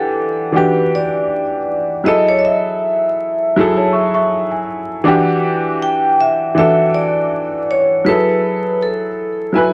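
A vibraphone and an upright piano open together in this nostalgic, hazy hip hop fragment, cut from a longer piece and moving with a lazy swing in 4/4. The vibraphone carries the melody with a metallic, ringing tone and a slow motor vibrato, softened by a low-pass filter and plate reverb. Up front, the woody, slightly detuned upright piano plays the accompaniment through a vintage cassette-tape coloring, filtered and bathed in plate reverb. Between 3.8 and 5.0 seconds a worn celesta adds a brief second line, bell-like and delicate, with soft felt hammers, a slightly out-of-tune sweetness, a boxy small-room character and an analog delay. The harmony alternates between Em9 and F#m9, while a wet studio reverb, vinyl crackle and a faint mains hum give the recording its dusty, dreamlike atmosphere.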